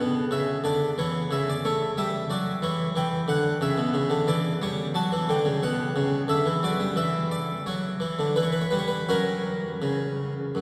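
The recording sits in a long, wet cathedral reverb that hangs for seconds and is heard from well back in the room, while the harpsichord itself comes across close-miked and up front, its tone dry, full and brilliant. This is a brief passage cut from a longer baroque-style suite movement in 3/4, moving at roughly 81-92 BPM with a rubato feel and a flowing yet grave mood. The solo harpsichord, voiced in the French style with octave strings adding weight to its plucked attack, spans from F#2 up to A5 across the whole 10.6 seconds. The harmony opens on D, passing through A7, D/F#, E5, C#dim/E and F#5 and back to D before a richer Dmaj9 arrives around 7.0 seconds. An Em6 leads to a closing F# chord at 9.1 seconds, leaving the phrase suspended as it reaches into the lingering space.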